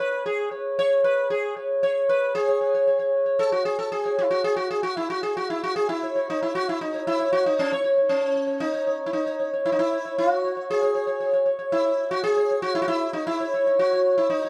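A straight 4/4 pulse carries this solemn, meditative Indian classical passage in raga darbari, cut from a longer piece, where a lone sitar plays up front for its full 14.5 seconds, its round, buzzing plucked tone shimmering with sympathetic strings in a moderate studio ambience under a dark production.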